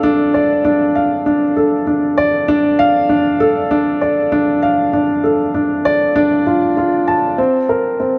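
Cinematic and intimate, this brief electronica excerpt features a dark upright piano playing solo in the middle-to-upper register, its mellow, woody tone sitting up front and natural within a huge ambient reverb that lingers for about 5.0 seconds.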